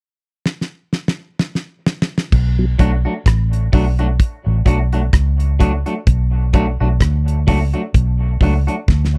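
A damped 70s drum kit with a fat snare, tight kick and dark cymbals opens this slow, hypnotic dub reggae excerpt at 64 BPM in B minor, playing a fill from 0.5 seconds before the foam-muted, amped electric bass enters up front at 2.3 seconds on a deep Bm7 groove with a swung sixteenth-note feel. A mellow tonewheel organ with chorus vibrato and slow rotary speaker makes a fleeting appearance, and a clean, twangy picked electric guitar soaked in dub echo joins at 2.8 seconds. The sound is dry and close, like a 1970s studio, and a brief drum fill closes the cut.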